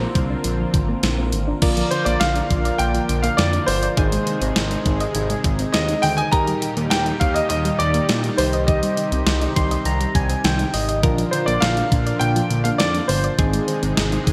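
Bright 1980s-style digital production bathed in a moderate plate reverb frames this driving, melancholic synth-pop excerpt. A clear, polished baby grand piano carries the melody through chorus and delay over mellow electric-piano-like synth keys, a slow-attack, detuned analog pad holding sustained chords, and a dark, gentle pluck playing arpeggios in the background. Underneath sit a smooth sawtooth synth bass and an up-front, overdriven 12-bit drum machine with a thumpy kick and gated reverb that enters at 0.2 s, while the synth keys add a fill from 9.3 to 11.0 s.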